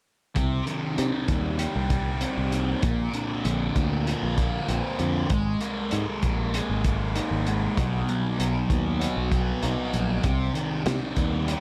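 Psychedelic rock with a hypnotic, mysterious air, this straight 4/4 passage is cut from a longer piece. A thick, double-tracked fuzz guitar sits up front, its picked, distorted riff colored by a phaser, while a round, dark picked electric bass holds the low end beneath it. A crunchy breakbeat drum kit of hi-hat, tight kick and medium-tuned snare has a gritty, saturated character with a rolled-off top. Entering at 0.8 seconds, a resonant drone on a single low C sits in the background, its sawtooth and sine layers carrying moving overtones with a slow attack, long release, chorus and built-in reverb. The harmony moves from C minor through Bbadd9, Absus2 and B before returning to C minor at 10.2 seconds, all within a small room ambience touched with light reverb.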